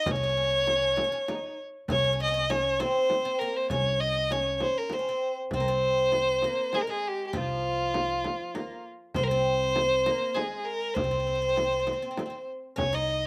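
A bowed solo violin and a plucked oud open this melancholic, hypnotic excerpt of Arabic maqam ensemble music in a straight triple metre. The violin carries the melody up front, its tone rich and focused with a smooth top and vibrato. Beneath it, the fretless oud traces a lower second line in a bright, woody voice from its double strings, sitting further back and touched by a slapback echo. An upright bass joins almost at once, its gut-string pizzicato thumpy and warm on a low C, and a large frame drum struck with hard hands adds a deep pulse with a small-room character. The passage moves into a new section at 5.5 s, and the drum drops out at 12.9 s while the strings carry on to the close at 13.3 s, all in a dry, open-air sound with little reverb around the players.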